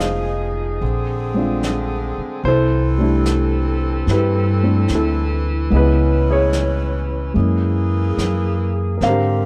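A woody upright bass, plucked on steel strings and set up front, anchors this late-night jazz ballad excerpt, moving between F1 and G#2 at a slow 74 BPM in 4/4 with a relaxed swing on the eighth notes. An intimate grand piano carries the accompaniment across a span from D3 to G5, its natural tone and short sustain letting the soft clatter of its action come through. Behind it, a mellow saxophone section holds tight, vintage-flavoured sustained chords with a soft attack and vibrato. A distant, roomy brush kit in a small room adds quiet touches of brushed snare and hi-hat, its snare tuned in the middle register. The harmony passes through Fm7, A#9, C6, C#m7 and F#9 over the 9.5 seconds, with tuning set to A4 = 437 Hz and little reverb keeping the overall sound close and dry.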